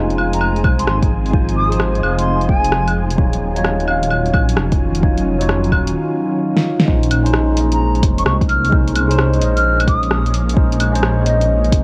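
A dark, rumbling detuned saw bass sits up front in this rainy, wistful future garage piece, pumping beneath a clean tine electric piano coloured by phaser and tape echo, an ethereal, chorused pad in the background, a breathy wind-like noise layer that stops at 6.0 s, a swung deep house kit with fat snare, claves, hi-hat and rim clicks over a deep electronic kick, and a bright, distant wooden flute with vibrato that plays two phrases starting at 0.3 s and 7.7 s, the whole mix carrying a cassette-tape grain.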